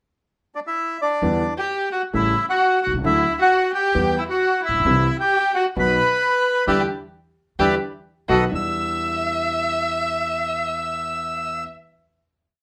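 Tango, tense and melancholic in E minor at 131 BPM with a rubato feel: a dark, reedy bandoneon opens alone at 0.6 s with a motif-based melody in period phrases, partly doubled in octaves. At 1.2 s an intimate grand piano with deep bass and audible action noise joins a woody pizzicato upright bass in a marcato-in-two tango rhythm, and shortly after a bowed solo violin adds an expressive second line with vibrato and portamento. The band accents together from 6.7 s before settling on a final chord at 8.5 s, all in a small, wet room with a rough home-demo sound.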